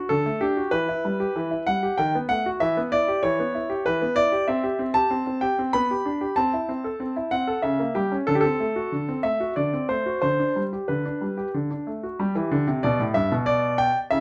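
A clear grand piano carries this cheerful, graceful excerpt from a classical-period sonatina entirely on its own, ranging from G2 up to B5. It moves at 95 BPM in 3/4, with rubato giving the phrasing a gently elastic, unhurried feel. The harmony opens on D and a shaded turn through E minor and B7/D#, then settles into G major from 4.5 seconds, passing through C, a C#dim7 and D7 before resolving home to G at 12.2 seconds. That arrival launches a new section that the cut leaves just begun at 14.2 seconds. The piano sits up front with a natural tone, framed by light reverb that adds a touch of air around its poised, elegant lines.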